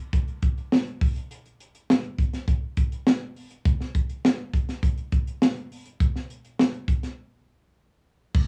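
A crisp, up-front acoustic fusion drum kit carries this upbeat, urban pop excerpt at 102 BPM in a straight 4/4, its tight kick, high-tuned snare, hi-hat and dark crash cymbal colored by cassette tape and set in a short, wet booth ambience with the small-room character of a home recording, before a break from 7.2 to 8.3 seconds.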